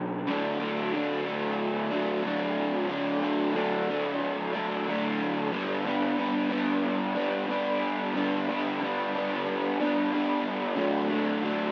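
In a straight 4/4 at 92 BPM, this brief cut of dreamy, blissful rock features a lone raw garage electric guitar, picked, overdriven and double-tracked with lush chorus, sitting up front with a lo-fi edge. In D major, it moves from D to G at 5.5 seconds and back to D at 10.8 seconds. A moderate plate reverb gives the 11.7-second passage a long, glowing tail.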